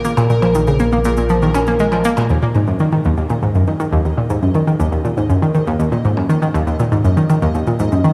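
A bright, round analog pluck leads this mysterious, cosmic piece of sequencer-driven space music, playing a riff up front through chorus, tape echo and a shimmer reverb, with a ring-modulated edge and a filter sweep on its quick, short notes. Beneath it, a fat, detuned analog bass sounds a thick, tube-saturated Bb1 over a Bbm chord, then stops at 2.3 seconds as the harmony moves to Ebm. In the background, a pulsing, tempo-synced gated texture of unison triangle tones swells in with a slow attack and sustains, treated with chorus and layers of reverb. Electronic shaker and percussion blips, re-recorded in a large room and treated with tape echo, sit far back in the mix, and both they and the texture fade in from 2.3 to 8.1 seconds. A dark production and a wet concert hall reverb wrap this brief passage, which is cut from a longer piece, in a spacious, cosmic haze.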